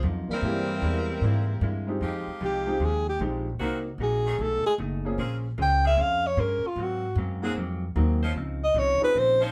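Recorded with moderate studio ambience as a band playing live in one room, this sultry, dramatic big band swing excerpt in F minor at 151 BPM opens with a clear, loose saxophone section carrying the melody over a tight, mellow trombone second line, a woody pizzicato upright bass, a boxy upright piano with audible action noise and a clean, compressed hollow-body electric guitar, before a breathy, whispered alto saxophone takes an intimate, up-front solo from 2.4 seconds against sustained chords from an edgy saxophone section.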